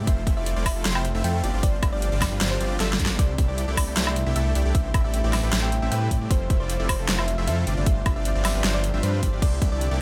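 A half-time 4/4 groove at 154 BPM drives this euphoric, bright future bass excerpt in C major, where a hard-clipped electronic kick and an up-front big-room dance kit with a huge snare, metallic hats, crash cymbal and woodblock play a drum fill at 2.8 seconds, a thick detuned saw bass with chorus and sidechain pumping sits beneath huge, lush supersaw chords that pump through their riff, a round, tine-like thumb-piano-like synth pluck with warbling chorus and dub echo carries the melody, and a very quiet thumb-plucked concert harp arpeggiates alongside an ethereal pad of sustained chords moving through Fmaj7, G7sus4, C69 and Am7, set in a digital ambience.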